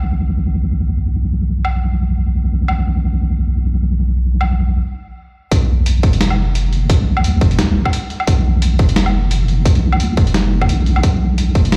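A deep, dark wobble bass opens this tense, cinematic half-time drum and bass excerpt, its rounded sine-and-triangle tone sitting up front with a fast attack, long sustain and a chorus shimmer. At 1.6 seconds a boom bap, sampler-style kit joins with hi-hat, a medium-tuned snare and woodblock, sounding pitched down, compressed and gritty, with a tape-warm character from being re-recorded in a small room. The groove carries a light swing on the sixteenths. After a stop at 4.8 seconds, the drop lands at 5.5 seconds, when a hard-clipped, overdriven electronic kick arrives up front and hits harder than the rest of the kit. The whole mix sounds as if it were played through a big sound system in a bare room, giving it a large, roomy tail.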